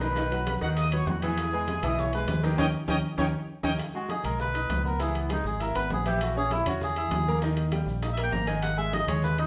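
A tight, up-front trumpet section with vibrato opens this fiery, danceable salsa excerpt over clear baby grand piano, a dark, round fingered electric bass and grainy maracas, joined at 0.2 s by thick-skinned, damped congas, very quiet high-tuned bongos and ringing metal-shell timbales, until a band accent from 2.6 s carries the trumpets to their close at 3.7 s and a reedy, breathy, nasal melodica takes an up-front solo from 4.0 s, the whole band playing live in one room with a wet large studio reverb.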